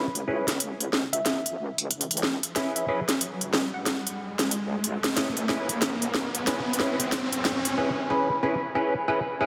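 Playful and swaggering, this glitch hop excerpt is one long build-up over a C#m7 chord, with an overdriven, stringy clav stabbing up front through phaser, low-pass filter and delay, while a heavy, detuned wobble bass growls beneath with chorus and saturation. A layered electronic drum kit with a cracking snare and crisp hats plays a swung drum fill, and a riser and swell enters at 2.1 s. A woody, wave-folded pluck melody glints in the background from 1.1 to 4.0 s, and the mix sits in a hall reverb under a dense, heavily limited modern master.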